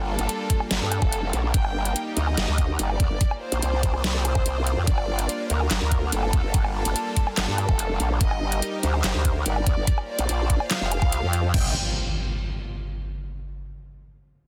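A dense, heavily limited and nearly dry mix opens this menacing, aggressive half-time wobble dubstep excerpt, where an up-front growl bass, saturated and detuned with chorus and overdrive, snarls beneath a lush sawtooth supersaw pad pumping against the sidechain. A dark chamber violin section carries the melody with light vibrato and a smooth, sul tasto tone, trailed by digital delay. Up front, a knocking electronic kick and a layered drum kit with a deep snare, metallic hats, handclaps, woodblock and crash drive the groove over moody minor chords until an electronic impact lands at 11.5 seconds.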